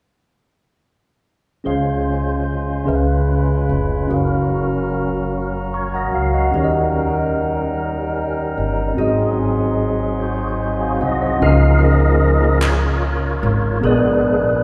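This slow, reverent gospel excerpt in a straight 6/8 opens at 1.6 s with a mellow, clean tine electric piano laying down the accompaniment, joined almost at once by a woody pizzicato upright bass, a fat, lightly overdriven tonewheel organ and a glassy, ethereal glass harmonica. The organ sits up front with its percussive third-harmonic bite, slow rotary speaker and chorus vibrato, holding sustained chords alongside the airy, beating tones of the glass harmonica, whose slow attack lets each chord bloom. The electric piano and organ both slip in fills at 5.3 s as the harmony moves through rich seventh chords. At 11.4 s the glass harmonica drops out and the organ takes an uplifting solo over the piano and bass, punctuated briefly by a crisp, vintage-sounding group handclap. A cathedral-like reverb with a long 4.5-second tail surrounds the ensemble, giving the recording the spacious, hallowed air of a church or concert hall.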